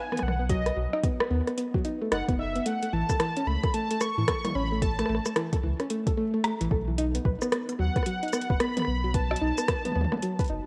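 IDM at 111 BPM in 4/4 with a swung sixteenth-note feel, intricate and playful, cut from a longer piece and moving over B, A5 and B7 chords with a light digital ambience and the soft haze of a home cassette recording. A velvety, detuned sawtooth lead carries the melody high above, with chorus, vibrato and tape echo, while a soft, round pluck spins arpeggios through chorus, cassette tape and tape echo. Up front sit a deep sine sub bass, an analog drum machine with metallic hi-hats, rim clicks, shaker and toms, and an overdriven electronic kick that enters at 0.5 seconds.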